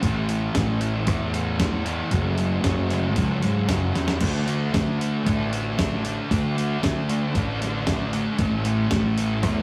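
Hazy and wistful, this short rock passage cut from a longer piece sits between shoegaze and dream pop, moving at a steady, straight 115 BPM in 4/4 in D major, tuned slightly under standard pitch to A4 = 437 Hz. A thick, double-tracked fuzz guitar picks a distorted riff up front, cycling through the power chords A5, F#5 and D5 before returning to A5. Beneath it, a fingered electric bass adds a dark, round and punchy overdriven low end. An 8-bit digital drum machine, crisp and sampler-like with a thumpy kick, fat snare, hi-hat and crash, is re-recorded in a small room and placed forward, dropping a fill at 4.0 seconds. The whole rough rehearsal-room take is bathed in a wet stone room reverb, lending the roughly 9.6-second clip a blurred, enveloping haze.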